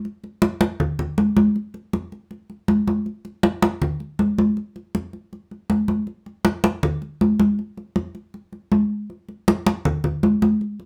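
Congas carry this short, festive Latin fragment on their own, bright and thin-skinned, medium-tuned and played with soft hands. They sit up front, close and dry, entering at 0.1 seconds and continuing to the end at 10.9 seconds. The feel is straight in 4/4, and the mood is joyful and celebratory. A moderate studio ambience surrounds the acoustic drums, giving them a natural sense of space. The passage moves from one section into another at 6.1 seconds, cut from a longer piece.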